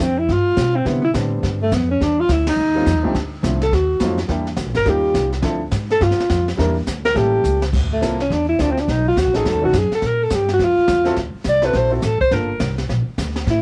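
A swinging 4/4 pulse at 210 BPM carries this smoky, moody small-group jazz passage in D minor, where pizzicato upright bass with a woody tone and a brushed kit with dark cymbals and a high-tuned snare support a breathy, subtoned alto saxophone with light vibrato and scooped notes, joined at 0.8 seconds by a polished upright piano with short sustain, with a band accent at 2.4 seconds and a drum fill coming before the saxophone's solo from 7.7 seconds, captured as a cassette home recording in a small room.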